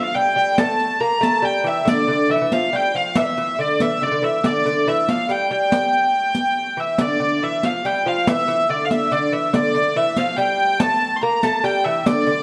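A rich, nasal hurdy-gurdy carries the melody up front in this driving medieval dance, its reedy wheel-bowed tone ranging from D5 to C6. Beneath it, a delicate fingerpicked lute with gut double strings plays a second line in the low register, while a very quiet, hollow alto flute adds an airy, distant second line of its own. A riq enters at 0.1 seconds with bright jingles, heard close in the mix. Set in G dorian and a straight 3/4 at 141 BPM, the ancient-sounding tune speeds up from start to finish and states its opening section twice, the second time from 7.0 seconds. Close, detailed microphones capture the players within a moderate recital hall reverb, and the piece is cut from a longer performance, ending at 12.4 seconds.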